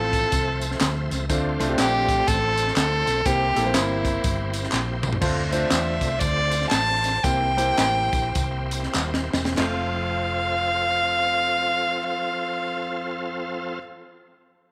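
A dark, woody violin with light vibrato carries the melody up front in this soulful, reverent uptempo gospel excerpt, over a clear, intimate baby grand piano, a shouting, lightly overdriven tonewheel organ with slow rotary speaker and chorus vibrato, a round, punchy hollow-body electric bass, a crisp fusion drum kit with a high-tuned snare, and background tambourine and handclaps. A drum fill at 4.7 seconds leads into a slowing passage, closed by another fill at 9.0 seconds, before the drums and percussion stop around 10 seconds.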